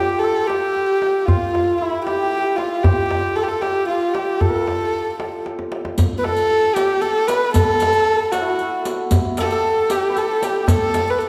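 A wet recital-hall reverb surrounds this passionate, festive Persian modal ensemble passage, cut from a longer piece and moving at 76 BPM in a straight 6/8. Up front, a single woody, close kamancheh carries the bowed melody with vibrato and portamento, while a bright hammered santur adds a shimmering, ringing second line alongside it and a deep, hard-handed tombak enters at 0.2 seconds. A drum fill at 5.5 seconds leads into a new section at 6.0 seconds, where a riq joins low in the mix with its dark jingles.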